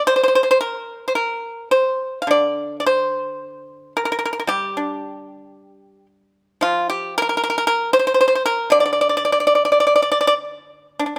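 A solo pipa carries this brief Chinese traditional piece, sounding from 0.1 to 11.2 seconds as the only voice. Plucked with fingerpicks, its tone is percussive and dry, set up front so each note lands close and clear. The line moves in a free, rubato feel over a loose 2/4 pulse, giving the phrases an elegant, longing quality. Its range runs from D3 up to F5. Close, detailed microphones and light reverb keep the sound intimate, and the passage is a fragment cut from a longer work.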